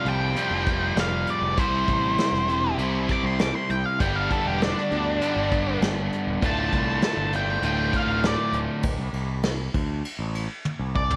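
A straight 99 BPM 4/4 groove from a roomy acoustic kit played with brushes and a growling, up-front fingered bass drives this gritty classic rock passage in D dorian, cut from a longer piece, as a dark octave-fuzz lead guitar solos over a bright crunchy guitar with spring reverb and an overdriven semi-hollow guitar through Fsus2, C, G and Dm until both rhythm guitars stop at 8.8 seconds, leaving lead, bass and drums on a D5 chord before a drum fill at 10.7 seconds.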